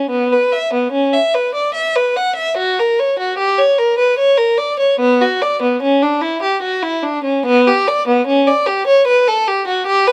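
Classical music in a baroque style, this short passage from a suite movement for unaccompanied violin unfolds in triple metre with a free, rubato feel. A single bowed violin plays alone from 0.0 to 10.1 seconds, ranging from B3 up to F#5. Its tone is rich and even, with a smooth upper register and vibrato. The mood is radiant and flowing. Close, detailed microphones place the violin up front, and a light reverb gives the sound a touch of space.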